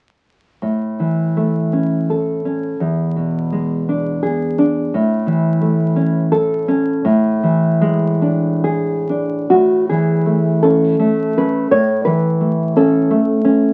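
Romantic solo classical guitar in 6/8, played with tender rubato. The nylon-string guitar sits up front with a dark, full-bodied, thumb-plucked tone, moving between A and E7 chords before a new section begins at 9.5 seconds. A wet studio reverb and the crackle of a very old 78 rpm record give this short excerpt, cut from a longer piece, an aged, intimate feel.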